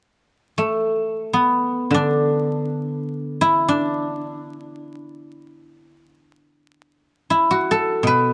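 A dark, warm recording with vinyl crackle and a light touch of reverb frames this short, pastoral fragment of traditional Chinese solo music, cut from a longer piece. A lone guzheng, played with fingerpicks and placed up front, enters at 0.6 seconds with silvery, ringing tones across its middle and lower registers. The flowing, unmeasured line shifts into a new passage at 7.3 seconds and ends at 8.3 seconds.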